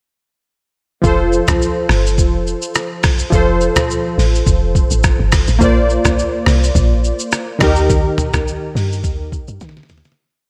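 Drums, bass and keys all arrive together at 1.0 seconds in this short, sunny and romantic afrobeats piece, which moves with a gently swung sixteenth-note feel. Up front, analog keys hold chords in a spread voicing, their detuned sawtooth tone round and full-bodied, with a filter sweep and a chorus shimmer. Beneath them, a deep log drum bass plays a bouncy, syncopated line with slides, its dark, percussive FM tone carrying a layer of noise. The trip hop sampler-style drum kit is compressed, pitched down and muffled, with a tape-warm character. It sets a soft, thumpy kick and a medium-tuned snare against syncopated rim clicks layered with finger snaps, along with shaker, hi-hat and toms. The harmony moves from F to Bbadd9 and then Eb, and the piece fades out from 7.9 seconds, with a drum fill closing it from 9.6 seconds in a dry, close-sounding room.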